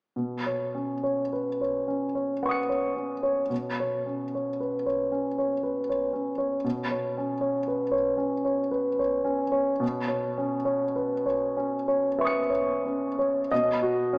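This is a short excerpt of impressionist classical solo piano in B major, hazy and luminous in mood, moving slowly at 42-59 BPM in 3/4 with a free, rubato feel. A single grand piano plays from 0.2 to 14.2 seconds, spanning B2 to C#7. Its tone is clear, polished and intimate, placed up front and present, with the mechanical noise of the action audible beneath the notes. The harmony drifts from Badd9 to Bsus2, then C#m9 over a B bass, before settling on a plain B chord at 13.5 seconds. A wet recital hall reverb with a 1.8-second decay surrounds the instrument, while the overall sound has the character of a small speaker.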